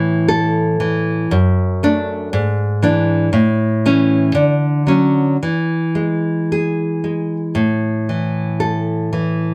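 A full-bodied nylon-string guitar sits up front in light reverb, its tone warm, deep and classical. This is a romantic piece for solo classical guitar in A major, sunny and tender in mood, moving at a relaxed 55-60 BPM in 2/4 with a rubato feel. The fingerpicked acoustic guitar plays alone for the full 9.5 seconds, ranging from F#2 up to A4. Its harmony travels from A5 through D/F#, E7/G# and A, then blooms into Dmaj7 before resting on E at 5.4 seconds and settling back to A5 at 7.6 seconds. The passage is cut from a longer piece.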